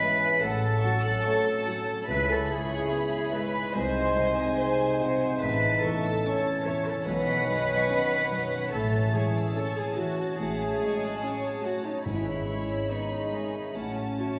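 A cinematic film score in C# minor opens on a full orchestral bed, with a dark, close violin section singing the melody high above a felt-muted upright piano, whose soft, intimate tone and short sustain sit beside the harp's thumb-plucked, ringing arpeggios. The mood is longing and sorrowful, unfolding at a rubato 72 BPM in 4/4. Around the lead, a very quiet solo clarinet with a smooth top weaves a second line, while a hollow small flute group with lifted highs and a floating chamber violin section played sul tasto add further second lines in the background. A woody, lush viola section adds very quiet accompaniment, while a mellow French horn section holds sustained chords further back. The bass is anchored by an up-front cello section played with soft attack, joined at 0.4 seconds by a rich, pure double bass section, and timpani struck with medium mallets on calf heads sound briefly from 12.1 seconds. 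The whole is heard from further back in a wet scoring stage reverb, and the passage is cut from a longer piece.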